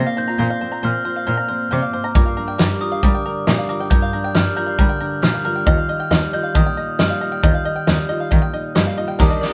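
A straight 4/4 pulse at 136 BPM drives this stirring, wistful indie folk piece with a building arrangement, where a ringing, bell-like glockenspiel played with soft plastic mallets carries the melody over a dark, full-bodied fingerpicked steel-string guitar with audible finger squeak, twangy banjo arpeggios played with fingerpicks, and a rich, reedy bowed cello bass, before a loose, gritty indie drum kit with a fat snare and punchy kick arrives up front at 2.2 s and a very quiet, woody upright piano and a boxy, swing-style picked acoustic guitar slip in at 9.2 s, the band sounding live together in one room with light reverb.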